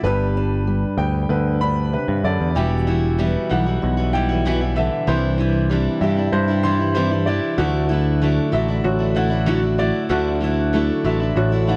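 A dry, close recording with a 1970s studio character frames this hopeful, nostalgic indie folk excerpt in G major, moving at 95 BPM in a straight 4/4 over G, Emadd9, Cadd9 and Dadd9. A dark, boxy fingerpicked acoustic guitar with old strings and a clear upright piano playing arpeggios through tape echo open together, anchored by a bright, growly picked electric bass sitting up front. At 2.6 seconds a second acoustic guitar, a picked dreadnought with audible finger squeak, joins to build the arrangement.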